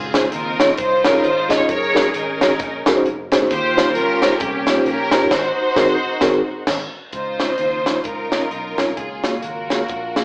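A swung 4/4 groove at 132 BPM drives this hopeful, uplifting uptempo gospel passage in Db major, cut from a longer piece. A crisp, up-front acoustic drum kit with a high-tuned snare and punchy kick carries the beat, while an amped fingered electric bass sits in the background and a mellow tine electric piano comps through rich jazz harmonies such as Dbmaj9, Gb69 and Eb13. A lush, bowed string section with vibrato sings the melody up front; the band hits accents from 5.3 to 7.1 seconds, and a dark, tight French horn section enters at 7.1 seconds with sustained chords, all set in a large studio reverb with a live-in-one-room feel and an AM-radio sound.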